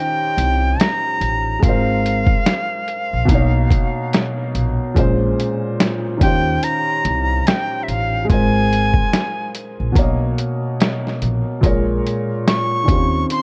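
Swung sixteenths at a relaxed 72 BPM in 4/4 set up this reflective, hazy lo-fi hip hop excerpt, where a breathy, bright jazz flute with vibrato carries the melody through a low-pass filter and analog delay over a soft, felt-muted upright piano cycling Eb13, Ab69, Bmaj9 and Bbm9, while a woody pizzicato upright bass on gut strings and an overdriven, sampler-style drum kit with a thumpy kick and 12-bit grit join at 0.4 s, all in a small room on cassette tape.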